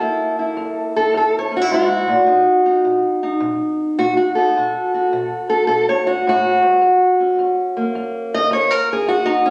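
A loping swung feel in 4/4 carries this short, soulful and swaggering acoustic country blues cut, where a lone fingerpicked steel-string parlour guitar, dark and boxy in tone and sitting up front, moves from F#7 to B7 before settling on F# at 6.8 seconds, all set in a moderate studio reverb with the character of a phone recording made in the room.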